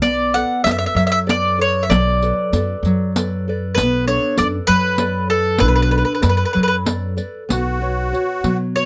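The recording is close and detailed, with very little reverb, so each instrument comes through clearly. This short cut from a longer Italian folk serenade in 6/8 feels lively and sunny, resting on a Bm7 chord that moves to Bsus2 at 7.5 seconds. A bright, picked mandolin with doubled strings carries the melody up front, while a full-bodied nylon-string guitar fingerpicks a warm classical accompaniment beneath it. A woody pizzicato upright bass with steel strings holds the low end, and a riq adds its jingles, played close and dry with soft hands. At 7.5 seconds a reedy, shimmering musette accordion enters up front with an airy second line on F#4, stopping at 8.6 seconds.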